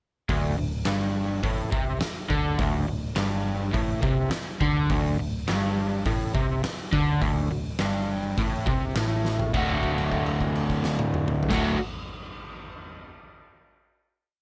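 Garage rock in D major at 104 BPM, rowdy and raw, with a crunchy, double-tracked overdriven guitar playing a picked single-note riff up front while a round, hollow-body short-scale bass with tube saturation doubles it in quarter notes. An oversized, low-tuned drum kit pounds out a big rock groove with a fat snare, punchy kick and dark cymbals, sounding gritty and saturated in a pumping, bright stone room. After a drum fill at 9.2 seconds, the band lands on a final D chord at 9.5 seconds and holds it until about 11.5 seconds, all under light reverb.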